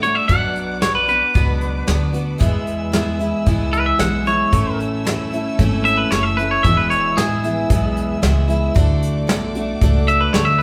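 A clean, twangy electric guitar solo leads this sunny, down-home honky-tonk and classic country excerpt, with full-bodied picked steel-string acoustic guitar, a growly pizzicato upright bass, a soft brush drum kit and a faint, lush bowed string section holding chords, all caught as a band playing live together in a stone room with moderate reverb.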